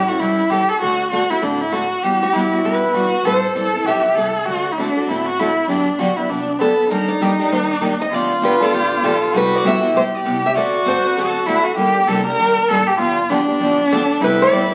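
Jazz manouche swing at 197 BPM in G major, charming and swinging, cut from a longer piece: a nasal, boxy bowed violin with vibrato and expressive portamento carries an up-front second line over a woody, thumpy pizzicato upright bass on gut strings in the background and a bright picked steel-string acoustic guitar accompaniment with fresh strings and audible finger squeak, while a second picked steel-string guitar steps forward with the melody at 2.2 s, the whole set in a large studio reverb at A4 = 435 Hz under the crackle of a very old 78 rpm record.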